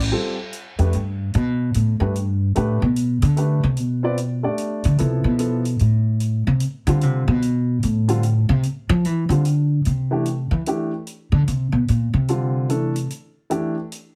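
An upright bass takes the lead in this modal jazz excerpt, soloing from the start with a woody, thumpy pizzicato tone from gut strings that sits up front and ranges from A1 to F3. The mood is spiritual and open, moving at 148 BPM in a swung 3/4, first in G mixolydian and then shifting to C mixolydian at 9.9 seconds. A warm concert grand piano accompanies with an intimate, natural tone, audible action noise, deep bass and short sustain, moving through Gadd9 and Am7 before settling on C69. A natural, rolled-off hi-hat sits quietly behind them, captured in a studio room. The bass drops out at 13.1 seconds, leaving piano and hi-hat to carry the final moments. The whole recording has light reverb and a heavily compressed, radio-like sound.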